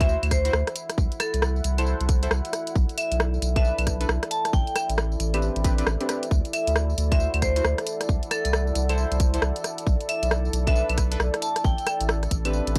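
Bouncy and skippy, this two-step UK garage cut moves at 135 BPM with a swung 16th-note feel, as a tight, up-front electronic kick and a tape-warm garage kit of claves, hi-hat, rim click and tambourine sit over a thick, saturated sine sub bass. A bright, metallic vibraphone struck with hard mallets carries the melody with a slow motor vibrato and tape echo, while soft, deep chord stabs with a filter sweep, chorus and echo cycle through D9, C6, Bm7 and Am11. Beneath it all, a moody, detuned ambient pad with ring modulation and sidechain pumping adds a dark haze, and the whole recording has a dry, gritty hardware character with light reverb.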